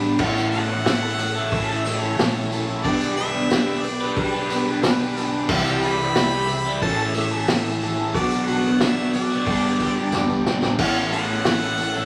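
Folk rock and heartland rock at a hopeful 91 BPM in straight 4/4, this short section sets a clear harmonica melody with light vibrato and scooped notes over an up-front, bright, double-tracked overdriven guitar riff with phaser, a full-bodied jumbo acoustic guitar in the background, a punchy amped bass, a very quiet tonewheel organ with key click and slow rotary speaker, a jingly vintage tambourine, and a vintage drum kit with dark cymbals and a punchy kick that plays a fill at 10.1 seconds, all moving through A, G/B, C, Bm and G in a moderate large studio reverb with vinyl crackle.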